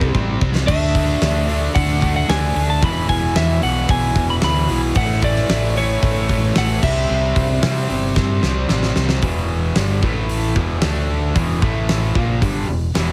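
A straight 4/4 hard rock groove drives this anthemic, swaggering passage cut from a longer piece. A big, acoustic drum kit sits up front with a fat snare, punchy kick, hi-hat and crash cymbal, and fills open the passage and close its first section. Beneath it, a fingered electric bass sounds round and amped. Three picked rhythm guitars play a low riff in the background: a bright, compressed one with distortion, a sludgy, warm one with overdrive, and a raw, double-tracked garage guitar, also overdriven. Above them, a lightly driven lead guitar with a slightly broken-up tone and digital delay carries the melody in a high register until 8.7 seconds. At 9.2 seconds a new section begins, with the riffing guitars, bass and drums pressing on together under a light room reverb.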